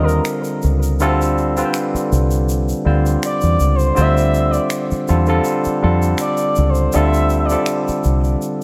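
A smooth, sawtooth synth lead gliding with portamento and vibrato through chorus and delay opens this late-night, soulful R&B and neo-soul excerpt at 81 BPM in D minor, sounding at once with a bright, barky tine electric piano through a combo amp and a round, punchy, foam-muted dub bass, while a close, dry tube shaker and finger snaps enter at 0.1 s over a lightly swung Cm9 to Dm7 change, the mix soaked in a dreamy plate reverb.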